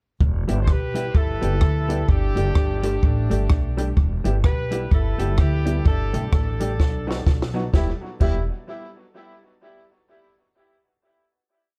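A punchy horn section carries the motif-based melody, its song-like phrases partly doubled in thirds with a light vibrato and set in tape echo and plate reverb. This energetic ska piece in E minor runs at 127 BPM with a swing on the eighths, moving between Em and Gsus2 before a drum fill from 6.8 seconds and a B chord lead to the final Em chord at 7.7 seconds. Up front, a compact cocktail kit plays a dry ska beat with a side-stick backbeat, dark cymbals, a high-tuned snare and a tight kick. Alongside it, also up front, a woody, thumpy upright bass with gut strings walks with slides. In the background, a clean, compressed hollow-body electric guitar and a worn, slightly detuned upright piano chop on the off-beats, both carrying the same echo and reverb as the horns, while the dark, warm production gives the whole piece a driving feel.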